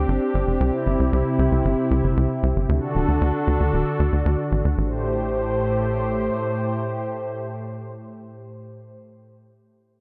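A bright, 1980s-style digital sheen and a moderate plate reverb frame this short, nocturnal synthwave excerpt in A minor, moving at 115 BPM in a straight 4/4. A warm analog pad sits up front, its detuned sawtooth and triangle tones softened by a lush chorus that gives the sustained chords a vintage, warbling glow with a soft attack and long release. Beneath it, a tight sequencer bass delivers punchy, driving sawtooth and square-wave notes with a fast attack and a decaying filter pluck, thickened by tube saturation. The harmony moves from Gsus4 to C and D before settling on Am7 at 4.8 seconds. The bass drops out at 6.3 seconds, leaving the pad to carry the moody close alone until 9.0 seconds.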